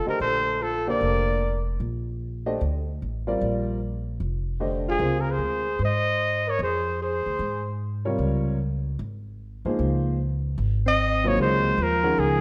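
Modal jazz at 150 BPM in 4/4 with a swung eighth-note feel, this excerpt from a longer piece feels open and hypnotic, resting on Bbmaj9 before moving to Dbmaj7 at 5.0 seconds and Dbmaj9 as a brief closing section begins at 11.4 seconds. A warm trumpet, up front with light vibrato and a smooth top, carries the melody, joined each time by a dark alto saxophone playing a second line with vibrato and scooped notes. The horns sound together from the start, return at 4.9 seconds, and come back once more near 10.9 seconds. Beneath them, a pizzicato upright bass with steel strings and a woody, forward tone plays throughout. An upright piano with a vintage character and long sustain supplies accompaniment, dropping out for a stretch in the middle before re-entering at 8.1 seconds. A moderate recital hall reverb gives the ensemble a natural sense of space.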